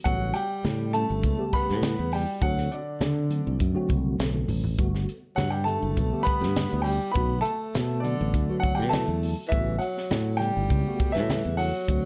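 Soaring and bright, this electric jazz fusion passage has a clear grand piano carrying the melody up high with slapback echo and plate reverb, a mellow tine electric piano with ensemble chorus comping in the background, a breathy tenor saxophone adding a low second line with vibrato and scooped notes, a growly fingered electric bass up front, a crisp drum kit with high-tuned snare and punchy kick that plays a fill at 4.2 seconds, and low-tuned congas tucked behind, over chords such as A13, D7, Gmaj9 and Bm7.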